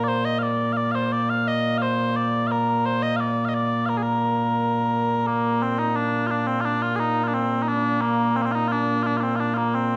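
A straight 2/4 pulse at 87 BPM carries this ceremonial, stirring slice of Scottish pipe music in Bb major, where a solo set of mellow small bagpipes sounds sweet and continuous up front from Bb2 to F5, playing the same section twice across 10 seconds in a wet recital hall with a 1.4-second reverb tail.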